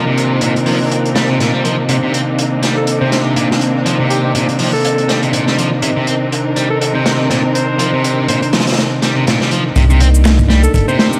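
Crunchy, saturated breakbeat drums sit up front in this funky, energetic 122 BPM breaks excerpt with a 57% sixteenth swing, joined by a mellow tonewheel organ's sustained Cm9 chords through slow rotary speaker, sampler grit and sidechain pumping, alongside an overdriven electric guitar riff and lush, bowed string stabs, both steeped in tape echo. From 2.8 s a breathy, whispered alto saxophone melody arrives with a telephone tone, and at 9.8 s the drop brings a deep, thick sub bass plus layered electronic shaker and handclaps. The mix is echo-heavy, set in a moderate echo chamber with vinyl crackle.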